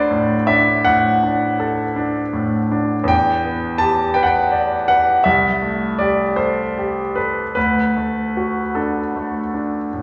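Bathed in a wet recital-hall reverb with a small-room ambience, this brief excerpt from a longer piece catches a bright, brilliant concert grand placed up front, its action noise audible and its deep bass present. A dreamy, serene romantic nocturne for solo piano, it moves in a rubato 12/8 at about 49-58 dotted-quarter beats per minute, spanning C2 to A5. The harmony drifts from D through Em7 and Am7/C before settling back on D at 7.6 seconds.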